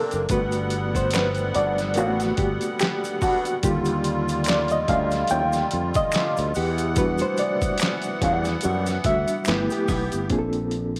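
A moderate echo chamber gives this soulful, smooth neo-soul and R&B fragment a roomy glow, and it is cut from a longer piece. The reedy, worn electric piano sits up front through its built-in speakers with a fast tremolo, slightly out of tune yet clean, and takes the solo until 10.3 seconds. A musette accordion holds shimmering, vintage, band-limited chords beneath it, while a growly, punchy fretless bass supplies the low end. The gritty, pitched-down sampler-style boom bap kit brings a thumpy kick, medium-tuned snare, hi-hat and handclaps, all overdriven and compressed, and a close, dry tube shaker with finger snaps sits in the background. From 1.1 seconds an electric guitar through a small old amp plays a slightly broken-up, picked second line with wah, set back in the mix. The harmony drifts from Gmaj7 through Ebmaj9 and Em9 to G6, touching Bbmaj9 at the close.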